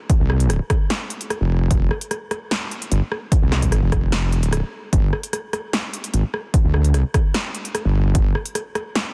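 A chaotic, menacing heavy wobble dubstep excerpt at 149 BPM in a half-time feel opens at 0.1 s with a punchy, layered electronic kick and a big-room dance kit of snare, rim click and crisp hi-hats, both up front and re-recorded in a small room. At 0.2 s a saturated sawtooth-and-sine wobble bass enters low in the register, with a fast attack, sustained and compressed, thickened by chorus and overdrive yet oddly mellow. The dry, dense, heavily limited mix holds the kit until 9.0 s.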